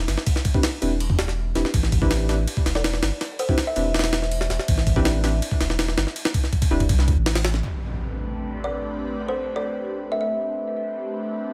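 A gritty, pitched-up jungle sampler-style drum kit sits up front in this dark, nostalgic drum and bass fragment at 163 BPM in A minor, its thumpy kick, medium-tuned snare and ride cymbal compressed and tape-warm in a small room ambience. Beneath it a thick, saturated sub bass holds the low end from the start until 7.6 seconds, while deep, nasal chord stabs with chorus and dub echo colour an Am11 harmony. A woody kalimba with 12-bit sampler grit and dub echo rings out a short melody around 2.8 seconds and returns later. At 7.6 seconds the drums and bass drop away as an electronic impact hits, and moments later an airy, breathy pad, detuned and layered with noise, swells in up front through chorus and phaser. The whole passage sits in light digital reverb, giving the clip a hazy, reflective close.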